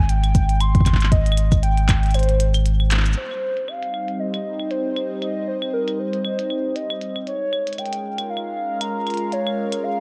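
A warbling, nostalgic lead with chorus, tremolo and delay carries the melody through this glitchy, intricate IDM excerpt in C phrygian at 117 BPM with a light swing, over a rubbery, bouncy square bass that falls away by 3.1 seconds and a soft electronic kick that drops out even earlier, filtered claves, handclaps, clicky hi-hat and shaker from a glitchy kit with digital delay, and a swirling phased analog pad that enters at 3.2 seconds, all set in a dark production with light reverb.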